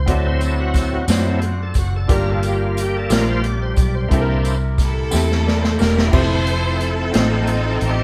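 A live, roomy recording with moderate reverb catches a slow, reverent gospel passage in 6/8 at 60 BPM, cut from a longer piece in F major, where a shouting, lightly overdriven tonewheel organ with slow rotary speaker and chorus vibrato takes a soulful solo over sustained chords until 6.1 seconds. Beneath it, a worn, slightly detuned upright piano with audible action noise accompanies, a dark, foam-muted electric bass sits round and up front, and a swinging big-band drum kit with dark cymbals and a punchy kick keeps time while a jingly tambourine stays in the background. A lush, intense bowed string section enters with the melody at 4.8 seconds, and a drum fill from 5.1 seconds leads out of the D7, Gm7, C7 progression into Fmaj7 and F7/A.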